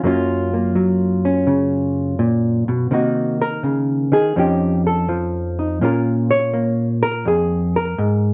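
A hollow-body jazz guitar plays alone, up front, for the full 8.3 seconds of this solo jazz passage cut from a longer piece. The mood is moody and smoky, set at 83 BPM in 4/4 with a swung eighth-note feel. The electric guitar's tone is dark, clean and fingered, with compression and a slapback echo, and its line ranges from F2 to Db5. The harmony moves from Gbmaj7 through Cm7b5 and F7b13 to Bbm7, arriving on that last chord at 5.8 seconds. The sound is a dry, close recording in a 1970s studio style, touched with light reverb.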